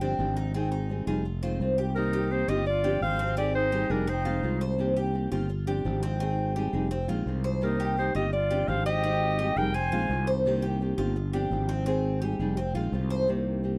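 A straight 4/4 pulse at 170 BPM drives this danceable, sultry slice of Cuban son and guajira in C minor, cut from a longer piece. Fingerpicked nylon-string guitar and the metallic double strings of a Cuban tres spinning arpeggios cycle through Cm7, G7sus4, Abmaj7 and Fm7 over a growly, up-front fretless electric bass. At 2.0 s a forceful, vintage-toned clarinet takes the jazz-style solo melody, joined by a breathy flute with a crisp chiff as a softer second line, and the pair return at 7.6 s, all in a dry, close 1970s-style studio sound with light reverb.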